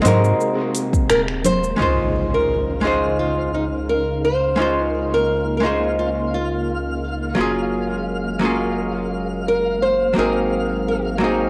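Cassette-tinged home recording with a moderate spring reverb frames this relaxed, blissful sunset chillout excerpt in Db major at 86 BPM, where a clean, hollow-body archtop guitar with analog delay and a silky string machine with ensemble chorus hold the chords over a round, dark analog bass, while a brief smooth R&B kit of metallic hats, cabasa, congas and finger snaps and a deep electronic kick mark the opening section, a fingerpicked nylon-string guitar carries the melody through tape echo from 1.1 s, an electronic impact sounds in the background from 1.8 s, and a twinkling granular shimmer joins at 2.4 s.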